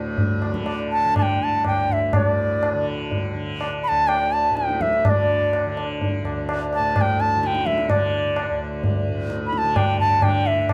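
Meditative and devotional, this Hindustani classical passage, cut from a longer piece, moves in 3/4 at 125 BPM and speeds up throughout. A mellow, shimmering tanpura drone with a buzzing pluck opens at 0.0 seconds, a high-tuned, distant tabla with a short ring joins at 0.2 seconds, and at 0.9 seconds a pure, reedy bamboo bansuri arrives up front, singing between D5 and B5 with vibrato and tongued notes. Close, detailed microphones sit within a moderate recital hall reverb, while the tabla sounds as if placed in a large room.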